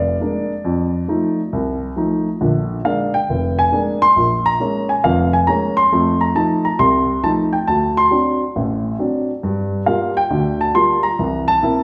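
A wet, large-studio reverb of about 1.3 seconds surrounds a dark baby grand piano, captured live in one room and placed up front. This short cut from a longer solo jazz piece swings at 137 BPM in 4/4, with a relaxed, sophisticated mood. The piano plays alone for the full 11.8 seconds, spanning F1 to C6, and its mellow, natural tone fades quickly on each note. The harmony moves from Bb7 and F7 through Bbm7, then D7, Gm7 and C7, giving a bluesy turn that leads toward the next phrase. The instrument is tuned slightly high, with A4 at 443 Hz.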